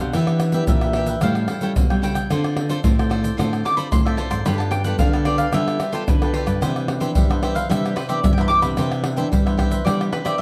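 Samba and choro in a festive, sunny mood, this short cut from a longer piece features a mellow, round mandolin playing the melody as a solo throughout, its doubled strings picked and touched with slapback echo, over a crisp, bright cavaquinho. Two fingerpicked nylon-string guitars fill out the harmony: a full-bodied classical guitar carries the bass line with audible finger squeak, while a second guitar with fresh strings sits in the background on accompaniment, moving through Em7, A7b13, Dm7 and G9 to Cmaj9. Up-front egg shaker, deep surdo, pandeiro and tamborim, played with hard hands and heard in a small room, drive the groove from 0.1 seconds and add a drum fill at 10.1 seconds. Everything is captured by close, detailed microphones with light reverb.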